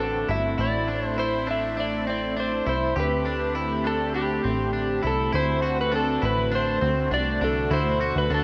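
A dark, slightly broken-up electric slide guitar carries the melody through shimmer reverb and digital delay in this blissful, ethereal dream pop passage at 101 BPM in D mixolydian, over twangy, bright arpeggios from a picked electric guitar at the edge of break-up, a thick, detuned unison pad of sustained chords, a punchy, funky analog bass with a fast filter pluck, and a delicate, slightly out-of-tune vintage celesta that glints very quietly until 5.6 s, all set in a moderate scoring stage reverb.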